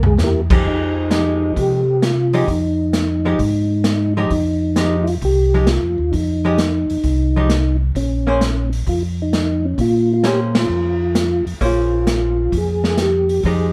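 A moderate club reverb surrounds this soulful, smoky soul jazz organ trio excerpt in F minor, swinging at 131 BPM in 4/4. A soft, flute-like tonewheel organ with second-harmonic percussion, chorus vibrato and a slow rotary speaker carries the melody. A round, clean second organ with key click holds down the bass up front beside a punchy vintage drum kit with dark cymbals, which opens on a fill at 0.0 seconds. A compressed, picked hollow-body archtop guitar enters on accompaniment at 0.5 seconds, the harmony moves from Fm9 to Bbm9 at 8.0 seconds, and the band hits an accent at 10.5 seconds.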